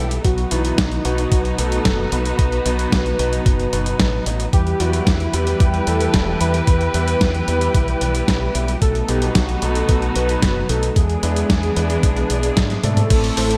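A dark, bowed chamber string section, a clear concert grand piano in the background playing stabs and a round, punchy fingered electric bass with an envelope filter open this bittersweet, danceable italo disco excerpt at 112 BPM in E harmonic minor. A thumpy, tape-warm electronic kick and a gritty, overdriven sampler-style soul drum kit with crash, hi-hat, snare and toms drive the straight 4/4 groove, while a thick, detuned sawtooth unison lead with a sub octave carries the melody through a diffuse ambient delay. Chords move from B to Em, back to B and on to E7, a drum fill lands at 12.8 seconds, and the whole mix is soaked in a dreamy hall reverb.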